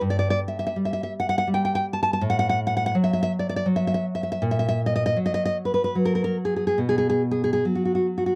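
A fingerpicked nylon-string guitar carries this brief excerpt of a romantic piece for solo classical guitar, its full-bodied, deep tone sitting up front from 0.0 to 8.4 seconds. The mood is wistful and passionate, and the playing moves in a flexible, rubato triple metre that lets phrases breathe. The guitar spans the range from G2 to A5, opening unaccompanied by any chord before shading through a rootless Dadd9/A at 2.2 seconds, then F#/A#, and settling on a bare B5 at 6.8 seconds. Tuned slightly low to A4 = 437 Hz, the instrument has a warm character. The sound is a dry, close studio recording in a 1970s style, touched with light reverb.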